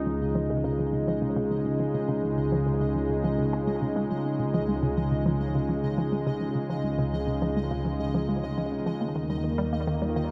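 Ambient, sequencer-driven space music in Db major at 104 BPM, this luminous, expansive fragment of a longer piece moves in a straight 4/4 across its 10.3 seconds. Up front, a sweeping resonant pad built from detuned sawtooths with a noise layer and filter swell holds sustained chords, airy and evolving under chorus, resting on Dbadd9 before shifting to Ebadd9 at 9.0 s. Behind it, a hollow square-wave pluck with fast attack and short decay plays a bouncy riff, colored by chorus, phaser and analog delay, while a filter sweep moves across this arpeggiated sound throughout. Beneath, a fat, thick analog bass of detuned sawtooths holds the low end with fast, decaying notes. High above, a faint pulsing gated texture of detuned unison triangles, tempo-synced and carrying chorus and built-in reverb, fades in over the whole span on a single Eb5. A light reverb gives the mix a gentle sense of space.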